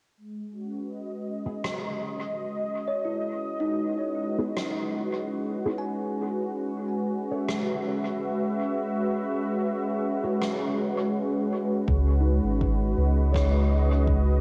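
A cassette home recording with light small-room reverb, this deep, hazy ambient dub excerpt at 82 BPM in C# minor floats a smooth, detuned analog pad with chorus over C#m7 and F#7(no3) chords, while muted, phaser-tinted chord stabs sit in the background, a natural rim click carries dub echo, and a woody kalimba plays arpeggios through a filter sweep and analog delay from 2.9 s, until at 11.9 s a round, up-front sub bass with transformer saturation and an overdriven electronic kick arrive on a C#5 chord.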